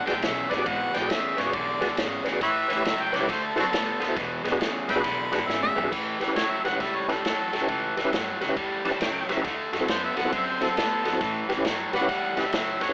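Electric blues shuffle at 136 BPM in A mixolydian, soulful and gritty, where a clear harmonica carries a jazz-style solo full of vibrato, tongue slaps and scooped notes over a bright, crunchy overdriven guitar riff up front, a full tonewheel organ with key click, slow rotary speaker and chorus vibrato that adds a fill at 8.6 seconds, a woody pizzicato upright bass, and a dark-cymballed vintage drum kit with a punchy kick that fills at 5.5 seconds, the whole fragment swung and colored by moderate spring reverb and an AM radio sound.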